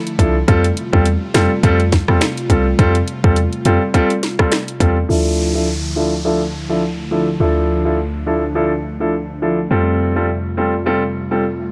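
Dancehall with a sultry, tough mood, cut from a longer piece, built on a tight, sharp electronic drum kit of kick, snare, hi-hat, rim click and finger snaps that drops out at 5.0 seconds, a deep, boomy 808-style bass, a polished, present grand piano up front, and an airy, breathy pad with chorus and sidechain pumping sitting in the background, while a downlifter and a filter sweep arrive at 5.1 seconds as the chords move from Fadd9 to Dmadd9 and back, all captured in a dry, gritty recording.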